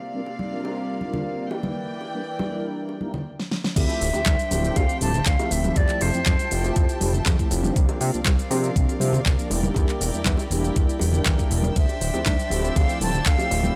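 Cosmic and sensual, this nu-disco excerpt at 120 BPM in D minor opens with dark, sul tasto chamber strings holding pumping chords beneath round, chorused synth brass and bright bongos and congas, until a drum fill at 3.4 seconds drops into a thumpy up-front kick, a fat saturated analog bass, a layered pop kit with filtered crisp hats and fat snare, and a pure silver flute melody carried on tape echo, all captured in a dry, gritty hardware sound.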